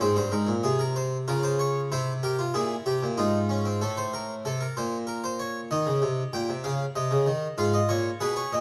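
A steady 3/4 pulse at 95 BPM drives this serious, solemn baroque-style fugue in three parts, heard as a short cut from a longer piece. A solo harpsichord in the French style carries every voice, its plucked tone full and dry from close placement, with the doubled strings giving the sound body as it ranges from G2 to G5. The instrument sits up front in a moderate recital hall, where a reverb tail of about 1.4 seconds frames the detailed, close-miked sound. The harmony moves through minor colours, opening on Gmadd11 and passing through C7 before a second section begins at 3.8 seconds on A minor. From there the progression presses on through Eb7 and C minor to settle on an F diminished chord over Ab by 7.6 seconds, keeping the mood grave to the cut at 8.6 seconds.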